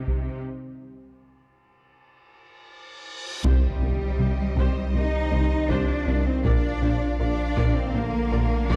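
A tense, vast hybrid orchestral and electronic film score opens with clear violas, rich cellos, a punchy analog bass riff and a warbly, lo-fi tape-like pad in a build-up, then a reverse cymbal from 2.4 seconds leads into an electronic impact at 3.5 seconds, where lush violin sections carry the melody and a second line over tight French horns, a smooth tuba, very quiet double basses, a deep sine sub bass, squelchy detuned blip-pluck arpeggios and very quiet, saturated taiko drums, in a dark production with light reverb.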